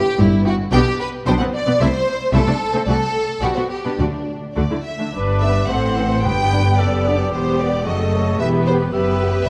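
Classical-period symphonic music in a quick, cheerful and graceful 2/4 with a rubato feel, cut from a longer movement, where clear first violins carry the melody over a rich second violin line, lush viola accompaniment, and a smooth bass of distant cellos and focused double basses, all bowed with vibrato. Very quiet timpani on calf heads add touches at the start, between 4.0 and 7.0 seconds, and at the close. From 5.1 seconds a mellow cor anglais and a distant, roomy clarinet join with second lines, followed by a pure silver concert flute and tight, softly held French horn chords, all set in a moderate scoring-stage reverb with a dark, warm production.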